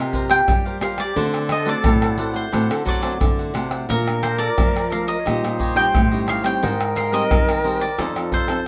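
A bright, crisp cavaquinho picks out a festive, playful samba-choro melody up front, shadowed by a distant, airy concert flute whose tongued, expressive second line carries vibrato. A second cavaquinho picks a warm accompaniment beside fingerpicked nylon-string guitar chords, while a dark nylon-string bass sits in the background with audible finger squeak. Egg shaker, pandeiro, tamborim and a deep surdo join at 0.1 seconds in a small, close room, all under light reverb as the harmony moves from C7sus4 through Bbmaj7 and Abmaj7 to F7 in this brief fragment of a longer piece.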